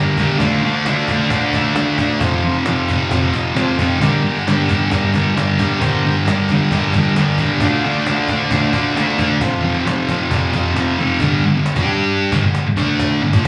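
Raw and swaggering, this garage rock excerpt stomps along at 133 BPM in a straight 4/4, rooted in G minor. A thick, double-tracked fuzz guitar sits up front, its picked riff distorted and warm, ranging from F2 to G4 with a slapback echo trailing each phrase. Behind it, a buzzy vintage combo organ holds clean sustained chords between F4 and Eb5, moving through Dm, F and Gm before falling away at 11.1 seconds. A snappy acoustic cajon struck with hard hands supplies the drums, its snares rattling in a small room and doubled by its own slapback echo, with the kick and snare dropping out at 11.0 seconds. From 11.2 seconds the music shifts to a new section built on G5 and D5 power chords. The whole performance comes across as a live gig heard through a club PA, with the venue's reverb and small-room ambience wrapped around the band.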